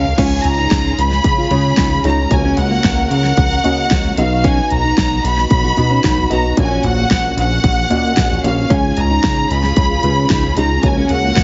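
Warm and anthemic, this piano-driven pop excerpt opens on a drum fill from a punchy, layered pop kit as an up-front, sul tasto violin section carries the melody over a mellow felt-muted upright piano with audible action noise, a glossy chorused synth bass, a fingerpicked jumbo acoustic guitar riff and lush background strings, all under heavy radio-style compression and large studio reverb.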